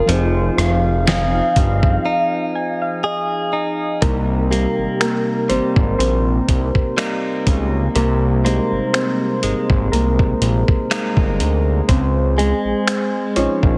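A heavily compressed, radio-like sound with light reverb frames this longing, late-night contemporary R&B excerpt, where a velvety, vibrato-touched synth lead sings until 3.5 seconds over round, warbling electric-piano-like synth keys that fill the break from 2.1 seconds and take a solo from 4.0 seconds, while a clean, direct-recorded electric guitar picks delayed arpeggios, a thick, detuned sawtooth analog bass sits up front, and a dusty, gritty sampler-style drum kit with a thumpy kick, fat snare, rim click, hi-hat and finger snaps swings lightly on the 16ths.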